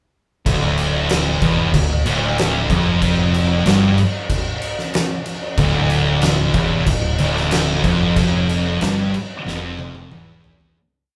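A thick, room-filling live sound in a large studio with moderate reverb carries this ominous, heavy stoner and doom metal piece at 93 BPM in D minor, where two fuzz-drenched picked guitars grind out a single-note riff (one dark and set back, the other up front and warm), an overdriven fingered bass doubles that riff in quarter notes, and an oversized low-tuned acoustic kit with a punchy kick, fat snare, toms and dark crash cymbals drives a big rock groove in a pumping, gritty room before a fade-out from 8.2 seconds and a closing drum fill at 9.5 seconds.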